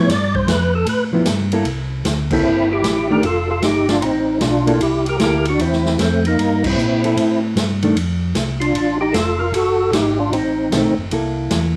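A swung 152 BPM groove in 4/4 drives this soulful soul jazz organ trio fragment in C major, with the big-band drum kit's punchy kick, snare, hi-hat, ride and crash sounding natural in a small room. A fat, lightly overdriven tonewheel organ with percussive third-harmonic attack, key click, chorus vibrato and slow rotary speaker carries the up-front melody, opening with a short solo turn, while a darker, round tonewheel organ holds the bass line and a clean, fingered hollow-body electric guitar comps until 8.0 seconds before returning briefly near the close. Band accents land at 2.3 and 6.6 seconds over rich thirteenth chords, and the whole take has the slightly worn, intimate character of a home cassette recording with light reverb.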